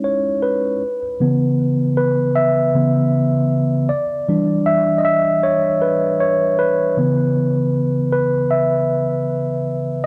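A mellow, clean tine electric piano plays alone, up front through its built-in speakers with a low-pass filter and a small room's reverb, moving from C#m9 through C#m7 and Em7 back to C#m7 in this reflective, melancholic hip hop fragment with a 16th-note swing.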